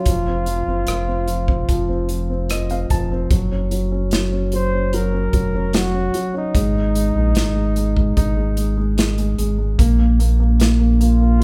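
A breathy, whispered flugelhorn carries the melody over an intimate grand piano, where the mechanical noise of the keys can be heard, in this melancholic, heartbroken pop ballad excerpt at 74 BPM, with a thick, saturated sub bass and a punchy acoustic drum kit of kick, snare, rim click and hi-hat joining at 0.1 seconds, a brief piano fill from 2.1 to 3.3 seconds, and the whole band playing live in a large studio room with a moderate reverb.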